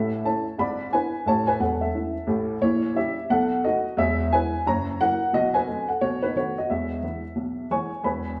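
Playful and exuberant, this short cut from a longer stride piano piece swings lightly at 177 BPM in E major, with a lilting feel on the eighth notes. A lone upright piano carries everything from 0.0 to 8.4 seconds, ranging from deep E1 bass up to C#6 in the treble. Its tone is dark, woody and a little boxy, slightly detuned and worn, with short sustain and audible action noise that puts the listener close to the instrument. The harmony moves briskly through A, E7/G#, A#dim7, B7, F#7 and back home to E, a classic turnaround flavor for this single section. The piano sits up front, yet a generous studio reverb with a 1.4 second tail gives the sound of a player performing live in a large room.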